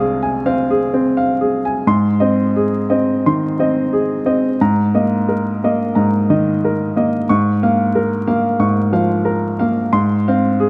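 Loosely felt rubato at around 89 BPM in 4/4 gives this short, tender cut from a longer neoclassical minimalist piano piece an uneven, breathing pulse. A solo upright piano plays throughout, sitting up front with a woody, polished tone and short sustain, reaching from C2 to Db6 and moving from Fm/C into Ab at 1.9 seconds, then through Ebsus4/Ab and Bbm/Ab before settling on Fm/Ab at 9.9 seconds. The production is dark and warm, with light reverb, small-room ambience and vinyl crackle.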